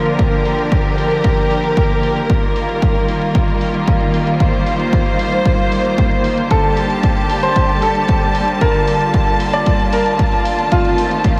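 Rich, bowed symphonic strings open this nostalgic, melodramatic italo disco cut in G minor, holding smooth, vibrato-laden sustained chords up front from Bb to Ebadd9. A punchy, tape-warm electronic kick drives a straight 114 BPM pulse in 4/4 almost at once, while low-pass-filtered electronic hi-hats sit softly in the background. At 6.5 seconds, as the harmony moves to Gmadd9, a brilliant baby grand piano enters with a melody carried by delay and a long natural sustain. The chords turn to F7 at 10.7 seconds just before this brief section, cut from a longer piece, ends. Huge ambient reverb soaks the dreamy mix, giving the whole passage a misty, cavernous glow.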